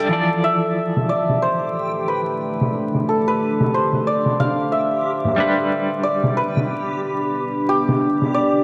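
A shimmering, up-front hammered santur carries the melody in D dorian over a dark, hypnotic 91 BPM trip hop groove with a 16th-note swing, joined by a bright, picked clean electric guitar with tremolo and tape echo, gritty, pitched-down sampler-style drums with low-pass filtered hi-hat and snare and gated reverb, a reversed, granular swelling texture from 1.5 s, and a deep, detuned sawtooth pad from 1.8 s that carries a filter sweep and 12-bit sampler grit, all over a Dmadd9 chord that moves to G at 5.4 s, with lush hall reverb, vinyl crackle and a bright 1980s-style digital production in this short excerpt from a longer piece.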